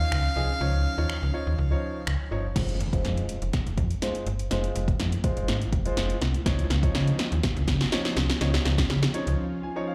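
An energetic, driving dance-pop excerpt in F minor at 123 BPM opens with a brief, nasal fiddle line with light vibrato and an airy bow, earthy and boxy in tone, touched with slapback echo and digital delay. It is heard only until 2.1 seconds, over a polished concert grand piano, a snappy FM bass with a metallic attack, and an ethereal, detuned pad sitting in the background. The deep house drum kit enters almost at once, with a deep kick, punchy snare, metallic hats, finger snaps and crash cymbal, overdriven and placed up front alongside the bass, while the bass, piano and pad all pump against the kick. From 2.6 seconds the harmony moves from Dbadd9 to F minor and a build-up begins, with a long drum fill, a filter sweep and a soft electronic impact underneath, as the pad drops out and then returns at 7.2 seconds. The chords settle back on Dbadd9 before a short break near the end, where the piano plays a fill against the pad's sustained chords. 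The whole mix has the feel of a live gig heard through a club's PA, with light reverb and a digital ambience.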